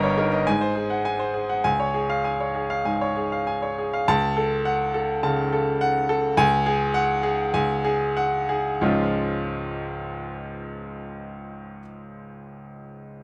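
A clear, intimate baby grand piano plays alone, up front, in a heroic and sparkling classical virtuoso study in Db major at 100 BPM in 4/4, with uneven, rubato beats and a range from G1 to Bb5. The harmony moves from Ab7 to Db, then through Gbm/Db and Dbsus4, with the tempo slowing from 2.9 to 8.8 seconds before settling back on Db. The natural piano tone carries long sustain and audible action noise, set in a light reverb, in this passage cut from a longer piece.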